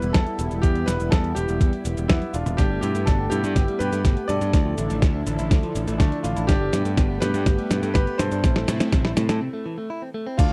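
A dry, close 1970s-style studio sound frames this nostalgic, melodramatic italo disco cut at 123 BPM, where a brilliant, intimate grand piano with audible action noise and tape echo carries the melody over a smooth, detuned sawtooth pad with chorus and a moving notch, a punchy, tube-saturated picked electric bass, a gritty sampler-style kit of fat snare, hi-hat, cabasa, crash and toms, and an up-front, thumpy electronic kick, while a clean, compressed electric guitar with tape echo joins in the background with arpeggios at 2.6 seconds after a drum fill, before a break arrives at 9.4 seconds.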